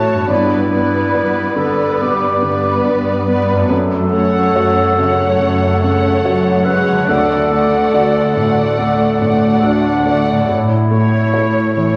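An up-front, mellow clarinet carries a second line beneath veiled con sordino violins singing the melody and another violin line, while a felt-muted upright piano with audible action noise, distant violas, ringing fingerpicked harp arpeggios and dark, lush cellos on the bass move through G, F#madd9, D and A in this bittersweet, moving cinematic passage in F# minor at a rubato 71 BPM, cut from a longer piece and bathed in wet scoring-stage reverb with vinyl crackle.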